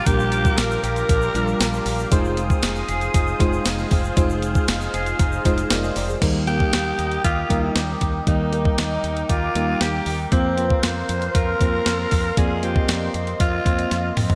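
A breathy, raspy alto saxophone sits up front with scooped notes and vibrato, playing a short solo phrase at the start and then returning at 6.5 seconds with a gritty, punchy pop melody carried by a touch of delay. This glossy, nostalgic 1980s-style pop piece moves at 117 BPM in a straight 4/4 in Bb mixolydian. A mellow, round FM electric piano with a warbling, vintage chorus provides the accompaniment, while a resonant sawtooth pad with slow filter swells holds sustained chords high above. A twangy, compressed clean electric guitar picks a chorus-soaked riff in the background, and fat, detuned analog synth brass adds bold stabs until both the brass and a grainy tube shaker drop out at 6.2 seconds. A dark fretless bass anchors the low end beneath a thumpy, sampler-style 12-bit drum machine with kick, snare, hi-hat, tambourine, toms and crash, which closes with a drum fill at 13.9 seconds. 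The bright digital production wraps the sound in a lush hall reverb, and the passage is cut from a longer piece.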